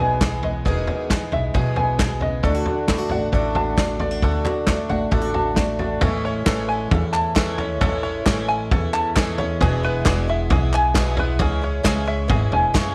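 A punchy, up-front country drum kit with a medium-tuned snare drives this uplifting, nostalgic indie folk excerpt at 134 BPM, alongside crisp background handclaps, a woody, growly pizzicato upright bass, a shimmering, octave-doubled twelve-string guitar with audible finger squeak, and a mellow, plunky open-back banjo on arpeggios, while a dark parlour-style fingerpicked steel-string guitar sits in the background until 7.8 s and a very quiet, jingly vintage tambourine enters at 6.5 s, all over a light studio reverb.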